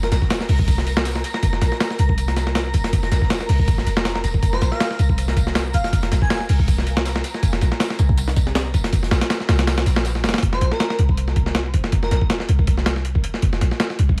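Drum and bass with a jungle edge, raw and atmospheric: a gritty, pitched-up sampler breakbeat with a thumpy kick sits up front over a deep, boomy 808-style bass, while a darker, saturated second breakbeat kit with tambourine hums in the background until 10.3 seconds, a twinkling granular texture shimmers through to 10.4 seconds, and an airy, detuned dreamy lead with chorus, 12-bit sampler grit and dub echo drifts in briefly at the very start, at 4.5 and at 10.5 seconds, all under a haze of vinyl crackle in a small room.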